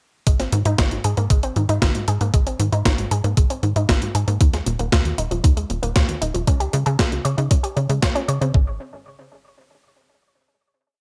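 From 0.3 s a sunny, danceable italo disco groove in Ab major at 116 BPM kicks off at once: a thumpy four-on-the-floor electronic kick sits loudest, a tight, punchy sawtooth sequencer bass jumps octaves up front, a clean 12-bit drum machine ticks closed hi-hat and a medium-tuned snare through gated reverb, and a round, nasal analog pluck repeats an 8-step arpeggio with chorus and digital delay over Abadd9, Ebsus4 and Db5 chords in a dry mix, before the parts stop by 8.8 s and a final moment rings out to 10.6 s.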